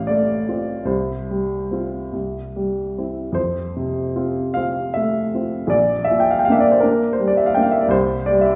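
Bathed in the lush reverb of a large studio, this brief nostalgic, tender fragment of a romantic classical nocturne in 6/8 has a solo upright piano with a woody, polished tone playing with free rubato across its 8.6 seconds, drifting through major and minor harmonies before arriving on a C chord.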